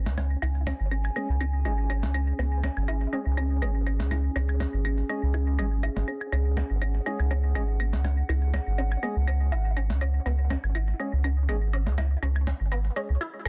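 A rubbery, hollow square bass sits up front in this sparse, hypnotic minimal techno passage at 122 BPM with a light 16th-note swing, joined by juicy, squelchy resonant blip plucks drenched in phaser, lush chorus and tape echo, tape-warm percussion blips and claves with delay, a warbling, nostalgic lo-fi pad with chorus and its own reverb, and dark, organ-like percussive stabs entering at 1.2 s with analog chorus and delay, while filter sweeps run across the synth arpeggio and stab sounds throughout this dense, heavily limited modern mix cut from a longer piece.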